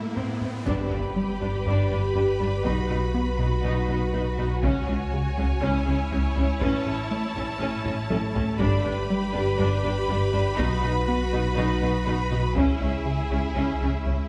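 Lush, up-front violas carry the accompaniment in this brooding, futuristic excerpt of a hybrid orchestral and electronic film score, their smooth, even vibrato holding a steady line in the middle register. An electronic riser opens the passage and gives way to an impact at 0.7 seconds, where violins enter with a focused second line above, joined by rich bowed double basses, a deep, round dub sub bass and a close, dry taiko ensemble struck with heavy sticks in the background. Underneath, a rubbery, hollow square-wave bass with a bouncy filter pluck and a wave-folded edge plays a dark riff, while very quiet cellos add clear, intense low support. A felt-muted upright piano, mellow and intimate with audible action noise and tape echo, weaves a vintage texture in the background. The taiko play a short fill at 7.9 seconds, and a moderate scoring-stage reverb gives the ensemble a sense of space.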